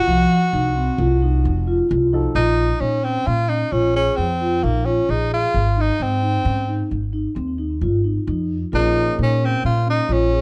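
A breathy, bright tenor saxophone carries the jazz-style solo melody up front with light vibrato, scooped notes and plate reverb, over a woody pizzicato upright bass, mellow soft-mallet vibraphone arpeggios ringing through tape echo, and a deep-toned concert grand piano in the background that plays only from 0.0 to 2.4 seconds and again from 8.7 seconds, in this driving, brooding progressive instrumental excerpt in Bb minor at 132 BPM in 7/4 with a dark production.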